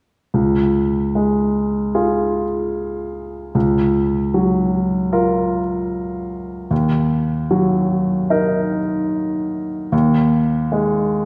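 The rhythm is loose and rubato, with a pulse near 75 BPM in 4/4 that bends rather than keeping strict time. This short cinematic piece, cut from a longer work, feels tender and hopeful. A clear baby grand piano is the only part, playing accompaniment from 0.3 s to 11.3 s across a range from C#2 to A#4, and its tone is polished and present, sitting up front. The harmony moves from C# to F#maj7/C#, then to D#m, and settles on G#5/D# near 9.9 s. A wet scoring-stage reverb with a 1.9-second decay gives the room a spacious, distant quality.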